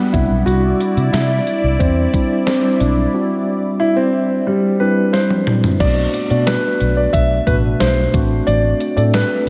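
A warm grand piano carries the melody through tape echo over a clean tine electric piano and a swirling, nasal analog pad that drops out at 5.8 seconds, as a round, foam-muted fingered bass and a thumpy, overdriven 12-bit drum machine with a fill at 5.1 seconds drive this nostalgic, uplifting 1980s-style pop excerpt at 90 BPM, all soaked in a dreamy hall reverb as the chords move from Cadd9 to Bm7 and D7/A.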